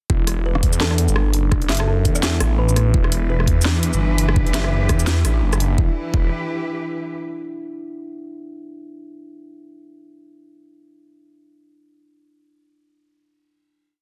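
This is a tense, heavy half-time drum and bass piece in E minor at 169 BPM, with a swung sixteenth-note feel. From 0.1 s an up-front, overdriven electronic kick knocks out a half-time pulse alongside a swirling, thick detuned sawtooth bass whose long gliding notes are saturated and coloured by a phaser. A sparse electronic kit adds a cracking snare, bright closed hats, rim clicks and shaker, all with an overdriven small-room grit. Above, a soft, woody kalimba repeats a sixteen-step arpeggio through delay, and at 0.8 s a round, tine-like synth pluck with chorus and tape echo sits dark in the background with short phrases. A lush bowed cello section enters at 2.9 s with slowly shifting sustained chords that pump against the sidechain, carrying the brief drop into a final chord in a dense, heavily limited mix that is almost dry.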